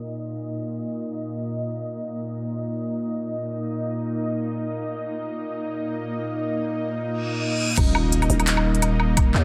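A nasal, string-like bowed drone with vibrato, built-in reverb and sidechain pumping holds tense sustained chords through a filter sweep in this spacious, free-time half-time drum and bass excerpt, until a faint reverse cymbal from 7.2 s leads into a drop at 7.8 s, where a buzzy, growling 808-style bass, a knocking overdriven electronic kick with an impact, and an overdriven kit of crisp hats, handclaps, crash and woodblock arrive inside a huge ambient reverb.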